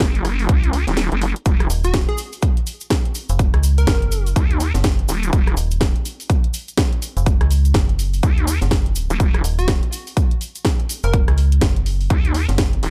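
Bass house at 124 BPM in Eb minor, aggressive and swaggering, with a swung sixteenth-note feel and a dry, close sound, cut from a longer piece that rests on a single Eb minor chord. A nasal, wobbling vowel-sweep bass with chorus, tube saturation and sidechain pumping sits up front beside a punchy, tape-warm electronic kick, while a house drum kit adds hi-hat, rim click and a cracking snare, with a brief break between 1.0 and 1.5 seconds. A grainy cabasa enters in the background at about 1.5 seconds, and from about 1.7 seconds a metallic FM bass with a decaying, digital edge joins, while a bright, catchy, detuned unison lead with cassette tape and tape echo appears in two short bursts, the second from 9.6 to 11.1 seconds.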